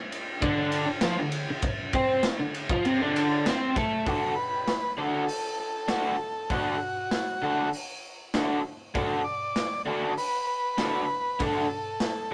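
A straight 4/4 pulse at 98 BPM drives this raw, rowdy garage rock clip in D mixolydian, cut from a longer piece. The raw garage drum kit sets it going at 0.1 s with hi-hat, punchy kick, ride cymbal and a medium-tuned snare, its acoustic sound gritty and saturated, with a pumping small-room character and a rolled-off top. A crunchy overdriven electric guitar, picked and double-tracked, joins almost at once with a warm riff that sits up front, while the harmony moves from D5 to D around 4.1 s. At 4.4 s a vintage combo organ enters with a buzzy, overdriven melody touched by light vibrato, standing up front alongside the guitar. The whole clip has the rough feel of a rehearsal-room recording, with moderate small-room ambience around the parts.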